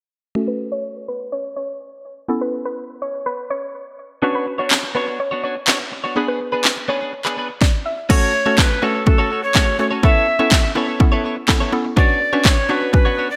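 A bright, 1980s-style digital production with a moderate plate reverb frames this driving, bittersweet dance-pop excerpt, which opens with a woody, chorused mallet-like synth pluck pumping against the sidechain beneath a dark, soft round pluck melody trailing digital delay, all under a filter sweep. A clean, compressed electric guitar riff recorded direct arrives at 4.2 seconds, and soon after an up-front house kit hits with a punchy overdriven kick, a cracking snare, handclaps, crash cymbal and gated reverb. At 8.1 seconds an airy, distant alto recorder with a crisp chiff and vibrato takes over the melody as the chords cycle again from F#m through Aadd9 to Bmadd9.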